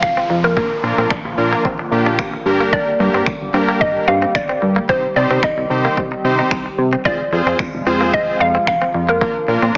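An energetic, confident dance-pop passage opens on a woody, mallet-like FM synth pluck carrying the melody over a shimmering pulse-width pad and a glossy, dark synth bass, both pumping with sidechain. A punchy deep house kit of kick and finger snaps drives the straight groove, and a very quiet downlifter drops away by 2.7 s. A twangy, clean direct-recorded electric guitar riff with lush chorus sits in the background from 0.2 s, a fat, bold detuned polysynth arrives up front at 0.6 s, and the chords move through Fm, Bb, Gm and Cm, all under light digital reverb and a heavily compressed, small-speaker radio sound.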